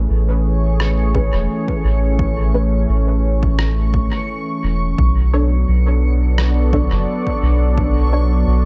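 A smooth, detuned analog pad and a deep, round sub bass open this short cut of meditative, spacious ambient dub, the pad holding sustained chords with chorus and a gritty 12-bit sampler edge while the soft bass sits up front. At 0.4 seconds a reversed, granular texture fades in high above, dreamy and swelling through its own built-in reverb. The groove moves at 86 BPM in 4/4 with a light swing on the sixteenths, carried by a muffled, pitched-down rim click under dub echo and small room ambience, and from 1.1 seconds an overdriven, punchy kick set back in the mix. Also entering at 1.1 seconds, a muted, mellow chord stab with a filter pluck and ensemble chorus decays into dub echo in the background. The harmony rests on Amaj7 before shifting to Bm7, and the overall mix is close and echo-heavy rather than reverberant.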